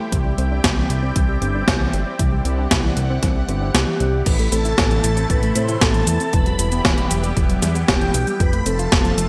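Dreamy and nostalgic, this 116 BPM synthwave excerpt sets a lush, phaser-tinged unison pad with sidechain pumping and gritty 12-bit sampler character over soft, round pluck arpeggios under a filter sweep, a fat detuned sawtooth bass, and a clean digital drum machine of crash, hi-hat, shaker and gated-reverb snare with a punchy electronic kick that drops out from 3.7 to 4.3 seconds; an octave-layered lead with tremolo, vibrato and delay enters at 3.7 seconds and shimmering string-machine violins join at 4.3 seconds as Cadd9 moves through Am and Emadd9 to F, all bathed in hall reverb with a bright 1980s-style digital sheen.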